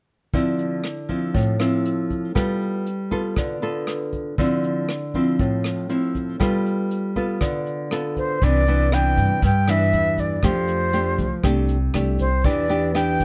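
Relaxed and sophisticated, this bossa nova excerpt in C major at 119 BPM opens with fingerpicked nylon-string guitar, up front with audible finger squeak, over a small-room brushed jazz kit with boomy kick, hi-hat and rim click, cycling between Dm9 and G9 before a breathy, tongued flute with vibrato and rolled-off highs takes the melody at 8.2 seconds, joined at 8.4 seconds by woody, growly pizzicato upright bass and a grainy tube shaker in the background as the chords move through Cmaj9, F69 and Em7 under light reverb.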